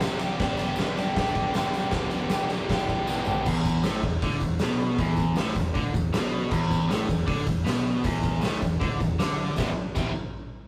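Garage rock with a raw, swaggering mood, this brief cut from a longer piece pairs a biting, double-tracked overdriven guitar riff with an oversized, low-tuned drum kit whose fat snare and punchy kick sit up front in a gritty, saturated stone-room sound, a very quiet jingly tambourine tucked beneath, a drum fill at 3.1 seconds leading into an E5 passage, all captured in a rough rehearsal-room recording.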